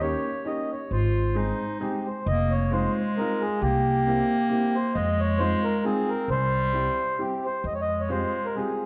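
A nostalgic, bittersweet musette waltz in F minor at 134 BPM with a swung lilt, cut from a longer piece, where a reedy, airy accordion carries the melody up front over a bright, soft-attacked clarinet second line, a clear upright piano accompaniment with audible action noise, and a growly, woody pizzicato upright bass, set in a wet recital hall reverb as the harmony moves from Eb7 and Ab through Fm7 and C7 to a closing Fmadd9.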